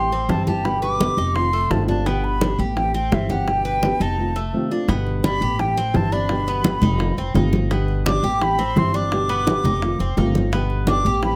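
An airy, mellow silver concert flute carries the melody with expressive vibrato and a soft attack, set in plate reverb, over a danceable Cuban son and guajira groove in straight 4/4 that cycles through Am7, G and F7 back to G. A dark, full-bodied nylon-string guitar is thumb-plucked beneath it, while a Cuban tres picks metallic double-string arpeggios and a woody, thumpy pizzicato upright bass sits up front. Thick-skinned congas enter at 0.1 seconds and round, low-tuned bongos played with soft hands at 0.3 seconds, both in the background, with a brief break at 4.2 seconds in this warm excerpt from a longer piece.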